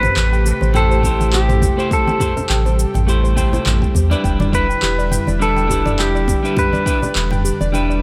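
Smooth and relaxed, this sunset chillout excerpt over Am7 and Em7 sets a scooped, clean electric guitar melody with digital delay and shimmer reverb against a bright, twangy second guitar that enters at 0.7 s, while an airy, breathy pad with chorus and a soft, round, dark pluck arpeggio sit in the background, an up-front sine sub bass anchors the low end, and a swung deep house kit with cabasa, handclaps and toms joins damped, low-tuned congas and a layered electronic kick that plays from 1.0 s to 7.0 s, all within a light digital ambience.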